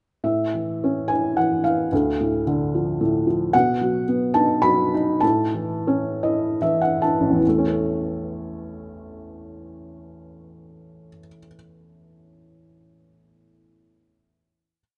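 Close, detailed microphones in a moderate recital-hall reverb capture a felt-muted upright piano, intimate and boxy with audible action noise, playing a complete short piece of sunny, relaxed classical solo piano in A major and 3/4 at a rubato 70-114 BPM, its song-like motif melody over a broken-chord accompaniment slowing from 3.5 seconds, with a felt piano fill at 5.9 seconds leading into a final chord that rings from 7.4 seconds.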